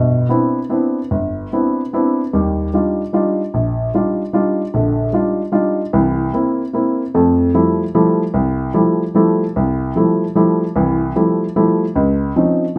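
A dark, mellow baby grand piano plays alone from the start, an intimate jazz waltz in a swung three that feels searching and hypnotic, moving from Cmaj9 through Ebmaj9 and C7. At 7.1 s the harmony shifts to Fmaj9, later sliding to Dbmaj9 at 11.9 s. The piano sits up front with short sustain and audible action noise, set in a wet studio reverb heard from further back in the room, in this excerpt cut from a longer piece.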